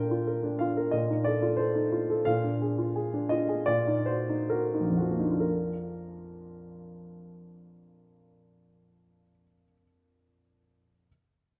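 In a rubato 2/4 that drifts between 63 and 93 BPM, this short passage from a longer romantic character piece for solo piano moves with a hopeful, passionate sweep in Bb major. The warm upright piano carries everything alone, reaching from Bb1 up to G5 with a woody, polished tone that sits up front and present in the mix. Its short sustain keeps each chord distinct, while a wet scoring-stage reverb with a 1.7-second decay surrounds it with a generous sense of space. The harmony begins on Bb, passes through F7/Bb and Bb7, and darkens briefly on Ebm/Bb. From 1.6 seconds the tempo gradually broadens until a new section begins at 5.4 seconds with a return to Bb. The piano then continues until the passage breaks off at 11.1 seconds.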